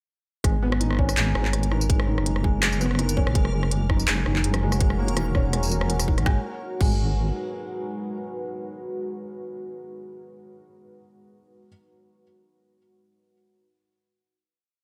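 This dark, tense half-time drum and bass piece at 165 BPM in G# minor opens at 0.4 s straight into its drop, with a felt-muted upright piano, a deep wobble bass and the drums all arriving together. The piano is soft and intimate, its action noise audible as it repeats a 12-step arpeggio loop that drifts against the bar, carried by delay. Underneath, the sawtooth-and-sine bass sits up front with long gliding notes, chorus and tube saturation. A tight layered kick and a sparse, lightly swung kit of woody snare, smooth hats, clap, rim, tambourine and crash keep the half-time beat. A reversed, granular texture holds a dreamy high note in the background, and a moody ambient pad with slow attack and sidechain pumping joins with slowly shifting chords as the harmony moves from G#m7 to F# and back. Once the drums and bass drop out, the piano and pad linger over a final G#m7 chord, the piano carrying on alone until 11.7 s.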